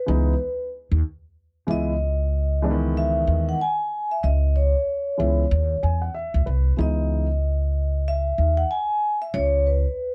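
Soft-mallet vibraphone carries the melody in this smoky, nocturnal jazz-hop fragment, its ringing, airy tone shimmering with a slow motor vibrato. It moves at 94 BPM in 4/4 with a swung sixteenth-note feel, in C# minor, tuned to A4 = 444 Hz and opening on a C#m9 chord. Beneath it, a dark upright piano supplies mellow accompaniment with long sustain, adding a fill from 5.5 to 6.8 seconds before it stops at 7.3 seconds. An acoustic upright bass, played pizzicato on steel strings, gives a woody, growly low end and sits slightly louder than the other parts. All three instruments are up front in a dark, warm production with light reverb. The section repeats at 6.8 seconds, and the vibraphone carries on until the cut at 10.1 seconds.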